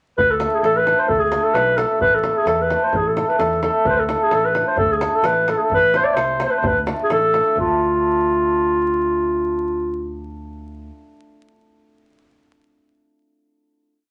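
Restless and virtuosic, this short Balkan wedding-band piece moves at 129 BPM in a swung 2/4, set in D dorian with a raised fourth and tuned slightly sharp. A mellow clarinet carries the melody up front as a classical-style solo, spinning hook phrases from a compact motif while sounding distant and roomy. Beneath it, a hammered cimbalom rings and shimmers with close-voiced off-beat chords, and a fingered electric bass, growly and direct, sets root and fifth on the main beats. A deep, dry davul drives a two-stick pattern until 7.8 seconds, just after the main section gives way to a final chord. Harmony rocks between D minor and A minor, and the whole track sits in a wet studio reverb with a dusting of vinyl crackle that dulls the top end, with the cimbalom ringing on alone until 12.0 seconds.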